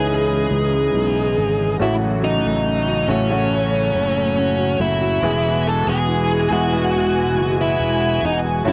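Heard through the soft, band-limited haze of a home cassette recording with light reverb, this hopeful, heartfelt pop ballad excerpt at 70 BPM in E major sets a dark, overdriven lead guitar melody up front over a brilliant concert grand piano, a shimmering, warbling pulse-width pad, a very quiet fingerpicked nylon-string guitar with finger squeak, and a growly, punchy fretless bass in lush chorus, moving from C#madd9 to A6 before a bowed violin section with vibrato and analog delay joins at 5.2 s on the E chord.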